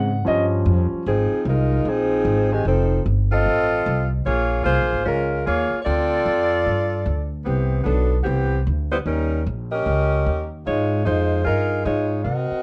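A worn, warbling old-tape sound with a warbly drifting pitch and light reverb colours this joyful big band swing excerpt, which is cut from a longer piece. A warm concert grand piano with a deep, natural low end opens up front before dropping out at 1.0 seconds, while a woody, pizzicato upright bass on steel strings carries the low line until 12.5 seconds. At 1.1 seconds a dark saxophone section takes the melody as an ensemble, its smooth top edged with light vibrato in a classic jazz style. The harmony moves through colourful changes such as Eb9, F7, Bbm7 and Cmaj7 before settling back on Ab6, giving the swinging line a bright, buoyant lift.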